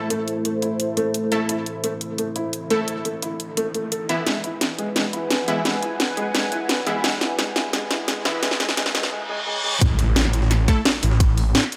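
Dark technical drum and bass at 173 BPM in 4/4, this tense excerpt opens on an A minor build-up that moves to Eadd9 at 4.3 seconds. A sweeping resonant pad holds detuned sawtooth chords with chorus and sidechain pumping, while a felt-muted upright piano plays soft, intimate arpeggios through a low-pass filter and delay, both parts under a filter sweep. Bold, punchy orchestra-hit-like synth stabs cut through with built-in reverb and delay, and an overdriven drum and bass kit with a cracking snare and bright hats sits up front, running a drum fill before a quiet reverse cymbal leads into the drop. At 9.8 seconds the music lands on A5 as a snarling, growling saw bass with distortion and a moving notch enters alongside a tight, overdriven electronic kick and a very quiet, gritty, pitched-up jungle sampler-style kit with a high-tuned snare and ride cymbal. A faint riser and impact frame the transition, and a moderate digital room reverb gives the mix a digital ambience.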